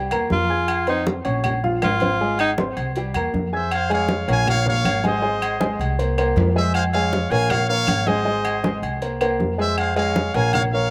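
A clear, smooth-topped tenor saxophone with light vibrato and a slapback echo takes a brief, up-front solo from 0.3 to 2.5 seconds, before a bright, tight trumpet section carries the melody from 3.5 seconds over a fiery, danceable salsa groove at 158 BPM in F minor. A natural-sounding baby grand piano and a dark, thumpy pizzicato upright bass with gut strings outline a cycle of Fm, Bbm, Ab and C7 chords, with augmented C7 chords arriving in the later section. Ringing congas, metal-shelled agogo bells and timbales with their own slapback echo, and woody claves in the background fill out the percussion in a dry, outdoor sound with little reverb.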